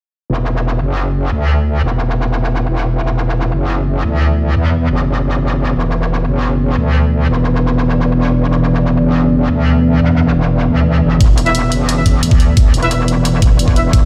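Dark technical drum and bass at 176 BPM, mechanical and tense, this cut from a longer piece opens with a metallic, saturated wobble bass with chorus and overdrive up front from 0.3 seconds, joined at 2.1 seconds by a deep, detuned ambient pad with chorus, 12-bit sampler grit and sidechain pumping holding sustained chords, before a knocking electronic kick and bright hi-hats arrive at 11.2 seconds, followed at 11.5 seconds by mellow brass stabs with delay and light vibrato, all heard through a big sound system in a bare stone room.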